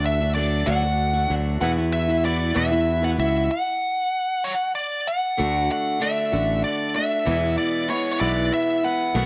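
Warm and open-road in feel, this folk rock and heartland rock excerpt moves at an unhurried 64 BPM in a straight 6/8, sitting in E mixolydian over D and Esus2 chords before a full stop at 3.5 seconds and a return on D and E at 5.4 seconds. A nasal, overdriven lead guitar with a parked wah carries the melody up front, over a bright parlour steel-string acoustic with fresh strings and a direct, modern fingered electric bass. A light reverb and small-room ambience give the close mix a touch of air.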